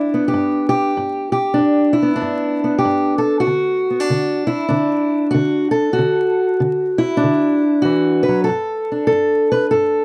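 A fingerpicked steel-string parlour guitar, dark and up front, plays alone in this soulful, rollicking country blues excerpt in G major at 95 BPM with a swung feel, moving from G to D at 3.5 seconds and settling on G5 at 8.5 seconds in a dry, close 1970s-style studio sound flecked with vinyl crackle.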